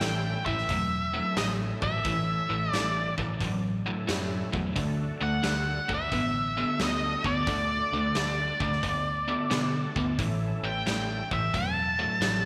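A roomy echo-chamber reverb and a faint mains hum surround this short cut from a longer blues rock and southern rock power-trio tune, played at 88 BPM in 4/4 with a swung eighth-note feel in A major. Up front, an octave-fuzz lead guitar with a dark, distorted tone carries the melody between D5 and A5, while a bright, double-tracked overdriven electric guitar picks a low riff. A vintage electric bass, round and foam-muted, anchors the bottom, and a huge arena drum kit in a big natural room brings a punchy kick, a medium-tuned snare and hi-hat. Sitting in the background, a thick overdriven tonewheel organ holds sustained chords through chorus vibrato and a slow rotary speaker, stepping forward with a fill from 8.8 to 10.2 seconds. The harmony moves from A to D at 4.8 seconds and back to A at 10.2, giving the passage a gritty, swaggering strut.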